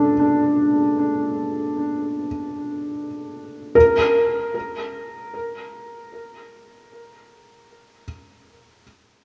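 Luminous and warm, this free-time ambient fragment cut from a longer piece features a solo felt-muted upright piano, soft, mellow and intimate with thin felt and audible action noise, sitting up front between D4 and Bb4 from 0.0 to 9.2 s; its opening D5 harmony gives way at 3.8 s, while tape echo and a wet concert-hall reverb bloom around it and the worn cassette sound adds a warbly pitch drift.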